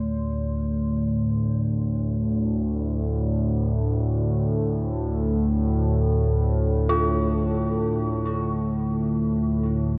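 Worn, warbling cassette tape colors this ambient fragment, cut from a longer piece, with a huge reverb that lets every sound hang in the air for a long time. In free time and centered on D minor, it feels unsettling and ominous from the first moment to the last at 10.0 seconds. Up front, an analog drone built from sawtooth and pulse waves sits between D2 and A2, mellow and evolving through pulse-width modulation and chorus as it sustains with a slow attack and long release. Above it, a dark, detuned FM synth bell plays eerie, inharmonic arpeggios around F4, each note striking quickly and decaying through chorus and tape echo. In the background, a bronze singing bowl struck with a wooden striker rings on A3, metallic and smooth with a slow beating, fading out across the whole 10.0 seconds.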